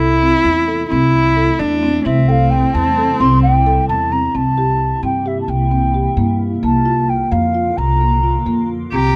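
In a straight 5/8 at 262 BPM counted in eighths, this restless, playful excerpt of contemporary chamber music in C mixolydian rides on woody marimba arpeggios and a plucked, up-front upright bass, moving through Am/C, C7 and Bb/C. A dark, bowed cello played sul tasto carries a second line until 4.1 seconds and returns briefly at the close, while a blurred, evolving granular cloud pad with its own reverb holds sustained chords from 0.6 seconds. From 2.1 seconds a mellow, hollow wooden flute takes the airy, vibrato-tinged melody, all captured with close, detailed microphones and light reverb.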